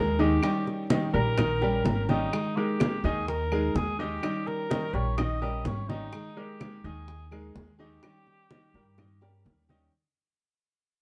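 Moderate studio reverb surrounds this nostalgic, danceable fragment of Cuban son and guajira, which fades out across its full length at 126 BPM in a straight 4/4, cycling between D#7 and G#sus2. A mellow cor anglais with light vibrato carries the solo melody up front yet sounds distant and roomy, while a fingerpicked nylon-string guitar with full body and finger squeak accompanies and a bright, worn baby grand piano plays short-sustained arpeggios with audible action noise. A woody, thumpy pizzicato upright bass sits up front, low-tuned congas with soft hands enter at 0.2 s, tight high bongos and dry woody claves stay in the background, and a drum fill arrives at 9.0 s.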